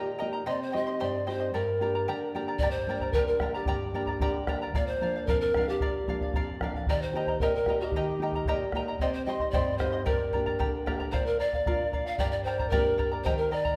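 Set in a straight 2/4 at 113 BPM, this Andean folk ensemble piece in G minor carries a mood that is at once wistful and festive, in a short cut from a longer work. A mellow wooden pan flute leads the melody from the start, its airy tone marked by vibrato, a crisp chiff on each attack, rolled-off highs and an unsteady quality. Beneath it, a fingerpicked charango adds a bright, shimmering layer from its double strings, some doubled at the octave, while a thumb-plucked nylon-string guitar supplies a dark, full-bodied, deep classical accompaniment. The round, acoustic bombo joins at 2.6 seconds, its live-room sound giving the dance a grounded pulse. The harmony moves through Cm, Gm, Bb and Eb, and a new section begins at 11.1 seconds, all framed by a moderate recital-hall reverb.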